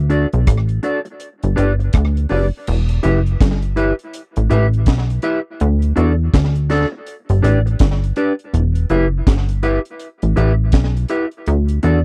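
A punchy analog bass anchors this serious, meditative roots reggae excerpt, its wave-folded, ring-modulated tone shaped by a fast-attack filter pluck, in E minor at 82 BPM with a swung sixteenth feel over D, G and E minor chords. A dark, clean electric guitar colored by lush chorus and tape echo sits up front beside a dry acoustic kit with a high-tuned snare, tight kick, rim click, hi-hat and crash, the kit touched with slapback echo. The close 1970s-style studio sound, tuned to A4 = 436 Hz, keeps the track intimate.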